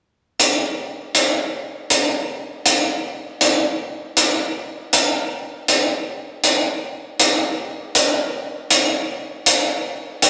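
Rock in 3/4 at 79 BPM with a straight feel, this brief excerpt carries a cathartic, cinematic mood. The only part is an acoustic hi-hat, which plays from 0.4 to 10.3 seconds. It sits up front with a big-room character, though the recording itself carries little reverb. The sound suggests a band playing live in one room, with a dull top end that stops at 10.6 kHz. Cut from a longer piece, the passage offers just this single stretch of hi-hat.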